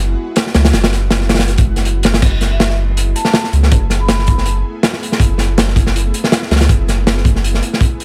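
Drum and bass with a jungle edge at 161 BPM in F# minor, this dark, nostalgic excerpt from a longer piece opens on an ethereal, airy pad with ensemble chorus, reverb and a grit of vintage 12-bit sampling, sustaining chords in the background over a deep, thick, saturated sub bass that sits up front. A crunchy acoustic breakbeat kit enters at 0.4 s with a tight kick, medium-tuned snare, dark cymbals and a gritty, rolled-off top, swinging slightly on the sixteenths in a small room. Once the harmony has moved from Eadd9/F# to F#m11 at 2.2 s, a metallic, ringing vibraphone struck with medium hard mallets drifts in the background through a dub echo between 2.5 and 4.5 s.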